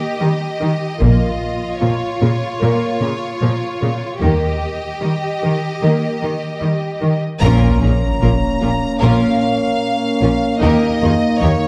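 Epic orchestral film score, dark and dramatic, in which clear violin sections carry the melody and a second line over rich, lush violas, cellos and distant double basses, while hard-stick taiko from the background punctuates the build-up and an up-front, warm horn section lands the impact at 7.4 seconds, joined moments later by a huge sub drop, all in a wet concert hall with a dark, warm production.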